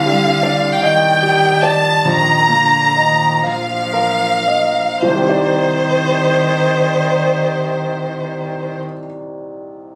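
Neoclassical piano and strings in a reflective, longing rubato 6/8, cut from a longer piece, where a rich, vibrato-laden chamber violin section carries the melody up front over a single focused cello's second line and a felt-muted upright piano whose soft, intimate, vintage tone and audible action noise hold the accompaniment until 10.0 seconds, the opening slowing through its first 5.0 seconds before the strings fall away at 8.8 seconds, all heard in a phone recording of the room with light reverb and studio ambience.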